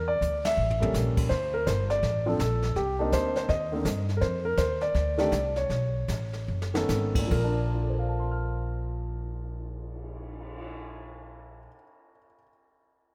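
An up-front grand piano carries the melody in this short jazz trio fragment, cut from a longer piece, with a warm, swinging mood and a swing feel in 4/4. Beneath it, a woody, thumpy pizzicato upright bass on steel strings sits close and prominent, while a brushed drum kit with dark cymbals, a medium-tuned snare and a punchy kick stays further back, adding ride, hi-hat, toms and cymbal swells. The drums open with a brief fill at 0.2 seconds, the band hits an accent shortly after, and the time gradually slows from 4.2 seconds before settling onto a Bbmaj7 chord at 7.3 seconds. The harmony moves through colorful extended chords such as A7b9, Cm9 and B9 along the way. A moderate, lush hall reverb surrounds the trio, and the overall mix has the rough character of a home demo.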